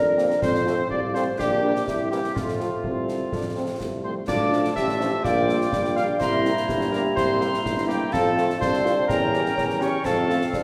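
Military-style march for wind band in 2/4 at 125 BPM in F major, spirited and festive and cut from a longer piece, with a mellow solo cornet carrying the melody over a classical woodwind section, a warm, vintage-toned euphonium in the background, a clear tuba bass, a very quiet, tight French horn section in accompaniment and a very quiet trombone section holding tight sustained chords, both with light vibrato, snare drum, bass drum and dark clash cymbals, and a bright wooden piccolo with vibrato entering at 4.0 s, set in a wet concert-hall reverb.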